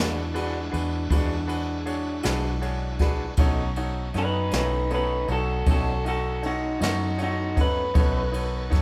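A band playing live in one room sits in a moderate large studio reverb, giving this cut from a longer slow blues a close, airy ensemble sound. It moves at 52 BPM in a straight 12/8 in B mixolydian, with a swaggering, gritty mood over chords shifting from E9 to B9 at 3.4 seconds. Up front, a jazz brush kit with dark cymbals, a medium-tuned snare and a boomy kick pairs with a round, foam-muted vintage fingered bass. A bright, brilliant baby grand piano with short sustain comps alongside a picked electric guitar through a small old amp, set in the background with harmonic tremolo, while a shouting tonewheel organ with key click, light overdrive and slow rotary speaker holds sustained chords further back. At 4.2 seconds a fingered lead guitar through another small old amp steps forward with a slightly broken-up, lo-fi, compressed melody.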